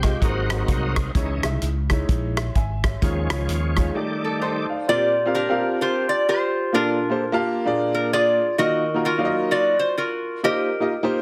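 Hopeful and jubilant, this swung uptempo gospel fragment at 129 BPM opens with a shouting, slow-rotary tonewheel organ taking the lead over woody upright piano, round fingered electric bass and a natural country drum kit with hi-hat, punchy kick and rim click, before the bass and drums drop out at 3.9 seconds for a break, and a nasal, metallic slide lap resonator guitar enters at 4.2 seconds to carry the melody up front over the piano as the music settles into Bb major with rich extended chords, all in a small, lightly reverberant room and a dense, heavily limited modern master.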